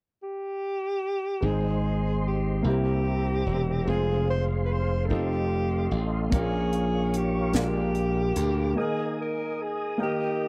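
A warm, vibrato-laden alto saxophone carries the melody in this jubilant, uplifting slow gospel excerpt, entering alone at 0.2 seconds in Ab major before the band joins at 1.4 seconds. Set in a straight 6/8 at 49 beats per minute, the tune moves through a chord sequence of Ab, C7, Fm, F7, Bbm and Bb7 before settling on Ebsus4 as a break arrives. A clear baby grand piano with short sustain provides accompaniment, while a soft, flute-like tonewheel organ holds sustained chords through a slow rotary speaker and chorus vibrato. A glassy, punchy slap bass sits up front in the low register, and a crisp fusion drum kit with a punchy kick and medium-tuned snare appears briefly from 6.3 seconds, with hi-hat alongside. The recording has a dry, close 1970s studio character with little reverb, and the piece is cut from a longer performance.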